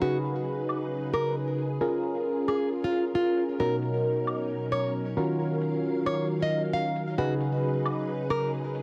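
Soulful and bouncy, this short cut of two-step UK garage moves at 134 BPM in 4/4 with a 61% swing on the sixteenths. A dark, fingerpicked nylon-string guitar carries the melody up front from F4 to F5, its notes trailed by delay, until it drops out at 8.5 seconds. Beside it, a glassy FM electric piano fires bell-like stabs with a fast attack and quick decay, coloured by chorus, phaser, a low-pass filter and delay. Underneath, a silky, vintage string machine holds sustained chords with a slow attack and long release through an ensemble chorus, moving from Db7sus4 through Bbm7, Bmaj9 and Ebm9 before returning to Db7sus4. A layered electronic kit of tambourine, metallic hi-hats and woodblock, re-recorded in a small room and filtered, sits quietly behind the rest within a light digital ambience.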